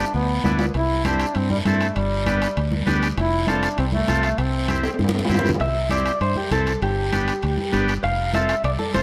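A lightly reverberant mix carries this joyful, danceable cumbia in C major at 198 BPM, cut from a longer piece. A distant, roomy duduk plays a scooped, vibrato-laden folk-style solo until 5.3 seconds over buzzy vintage combo organ, a foam-muted fingered electric bass up front, raspy, compressed guiro, bright thin-skinned congas and ringing metal-shell timbales, with drum fills at the start and at the close of the first section. At 5.6 seconds a twangy, picked clean electric guitar with spring reverb steps up front to carry the melody as the second section begins.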